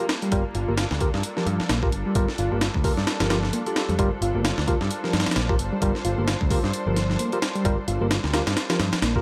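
A gritty, pitched-up sampler breakbeat kit with a thumpy kick and high-tuned snare sits up front in this swaggering, funky, swung breaks excerpt, alongside a punchy tube-saturated picked bass, a reedy overdriven electric piano riff with fast tremolo and delay, clean tine electric piano stabs under a filter sweep, and distant, veiled con sordino strings holding sustained pumping chords over a Gm7, all dusted with vinyl crackle and light reverb.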